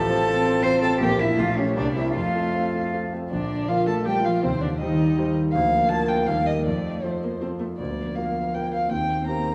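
A dark, woody violin carries the melody up front, its vibrato singing with a smooth top in this quick, lively classical-period movement for piano quartet. The tempo sits at 161 BPM in 3/4, and the pulse moves with a spirited rubato, beginning in F major before turning to Bb major at 3.3 s. Beneath it, a rich cello draws a pure, floating second line sul tasto with a soft attack. The viola adds close, intimate accompaniment with light vibrato and an airy bow, also played sul tasto. The concert grand piano, warm and natural with deep bass, sits up front as well, its action noise audible in the accompaniment. All four players sound together throughout this cut from a longer piece, wrapped in a wet concert hall reverb with a touch of small room ambience.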